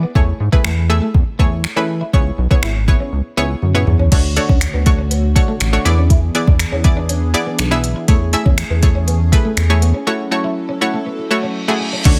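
Dance-pop at 121 BPM in F# minor, this short, bittersweet and energetic cut opens with a bright, detuned analog pluck pumping against a glossy, up-front synth bass, while a twangy twelve-string electric guitar riff sits in the background and a smooth R&B drum kit with soft kick, finger snaps and smooth, tape-warm hats drives the groove. After a drum fill, a shimmering pulse-width pad enters at 4.1 seconds with sustained chords moving through Dmaj7, E7 and Amaj7/E before settling on F#m7. A break at 10.1 seconds leads into a reverse cymbal rising in at 11.4 seconds, all in a dry, close mix.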